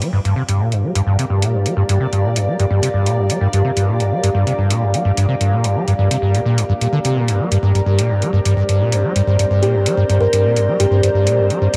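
A dry, gritty recording with light digital ambience carries this raw, driving acid house excerpt, where a squelchy, resonant liquid acid bass riff with overdrive sits up front over metallic electronic hi-hats, a dark analog pad in the background holds sustained chords under a filter sweep, a blurred, evolving granular cloud pad drifts through its own reverb, and a woody kalimba with analog delay plays a brief melody at 9.6 seconds.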